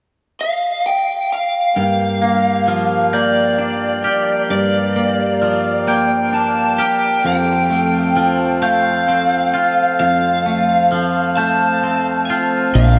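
Melancholic and cinematic, this slow rock passage in G minor moves in a straight 6/8 at 44 beats per minute, counted in dotted quarters. An overdriven, lo-fi lead guitar through a small cranked amp carries the melody from 0.4 seconds, picked up front with analog chorus and delay. At 1.8 seconds the harmony settles on Gm7 before moving to F, as a reedy, breathing pedal harmonium holds airy sustained chords and a clean, scooped, twangy electric guitar picks arpeggios drenched in lush chorus and analog delay. A glockenspiel struck with soft plastic mallets adds mellow, bell-like arpeggios high above, ringing through its own delay. At 12.7 seconds a growling, punchy fingered bass punches in on a single overdriven note just as the passage is cut short. The whole dreamy mix is soaked in a cathedral-sized reverb and carries the hazy color of cassette tape.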